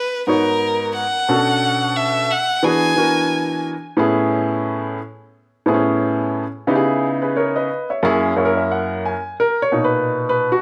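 A swung sixteenth-note feel at 89 BPM in 4/4 sets up this smooth, warm hip hop passage in B major, cut from a longer piece. A single bowed violin carries the opening melody, its tone rich, focused and slightly boxy with expressive vibrato, treated with plate reverb and analog delay, until it drops out at 3.7 seconds. An upright piano enters at 0.3 seconds to provide the accompaniment, sounding clear, woody and polished, sitting up front with its own plate reverb. The harmony moves through jazzy chords such as G#m9, Amaj9 and F#7 before the piano plays a fill at 8.0 seconds and then takes a short solo over Bmaj7 from 9.4 seconds. A short, wet studio room ties the sound together.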